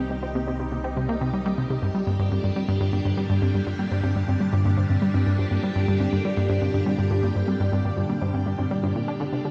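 Cosmic and hypnotic, this short excerpt of ambient, sequencer-driven space music moves at 122 BPM in a straight 4/4, cut from a longer piece and shifting from C minor to G minor at 1.8 seconds. A punchy, funky analog bass riff sits up front, its wave-folded tone plucking with a fast attack and decaying through tape echo. Behind it, a phased string machine holds sustained chords with a swirling, vintage character, its moving notch and ensemble chorus giving the pads a slow-blooming lift. A warbly, dusty pluck traces arpeggios in the background, lo-fi and detuned, with chorus, tape echo and a filter sweep across its sound. Underneath, a very quiet analog drone supplies an evolving, pulse-width-modulated bass bed, all four parts playing throughout the 9.5 seconds inside a huge ambient reverb and a dark production.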